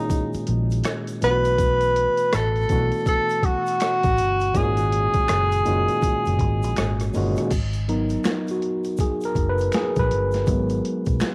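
Lightly reverberant home-cassette sound frames this sultry, smooth neo-soul R&B fragment in G# minor at 81 BPM with a swung sixteenth feel, where a warm, subtone tenor saxophone with scooped notes carries the jazz-style melody until 7.2 seconds over a worn, slightly out-of-tune tine electric piano, a gritty, pitched-down boom bap kit with a thumpy kick and high-tuned snare, a dark, round, foam-muted bass, and a distant egg shaker with finger snaps, before the electric piano takes a solo from 7.5 seconds to the end at 11.3.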